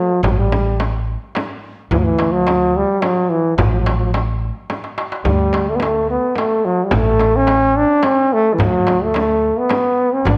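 Arabic maqam ensemble music in a straight 3/4 at 108 BPM, festive yet stately in mood, cut from a longer piece. A punchy trombone with vibrato and a smooth top carries the melody up front from the opening, soloing in a pop-inflected style between E3 and D4. A woody pizzicato upright bass on steel strings sits close beside it, holding down the low end from 0.2 seconds. Percussion enters at the same moment: a large, deep, metal-shelled darbuka, crisp but compressed and saturated, stays in the background, while a small, bright frame drum struck with hard hands sounds close and dry. A drum fill arrives at 4.7 seconds, and the whole recording carries the worn, warbly pitch drift of old cassette tape within a moderate recital-hall reverb.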